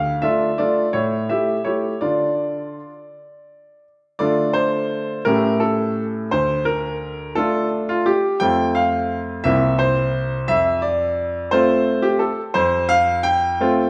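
A steady 6/8 pulse at 57 BPM in dotted quarters carries this graceful, playful classical-period sonatina excerpt in D minor, played by a solo bright baby grand piano, brilliant and up front across a range from C2 to G5, set in a moderate recital hall reverb as its harmony moves from Dm and A7 toward F and C7 in a second section beginning at 4.2 seconds.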